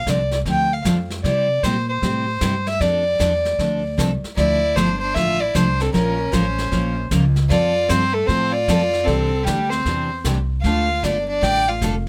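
A dry recording with little reverb carries this playful, down-home western swing excerpt in F major at 153 BPM, swung on the eighths. An up-front, sul tasto violin sings a smooth, floating melody over pizzicato upright bass with woody, thumpy gut strings, a bright, full-bodied picked dreadnought guitar and a polished brushed drum kit with a boomy kick, all moving through chords from Bbadd9 to Dm. At 4.4 seconds a clear, intense fiddle with light vibrato joins on a second line.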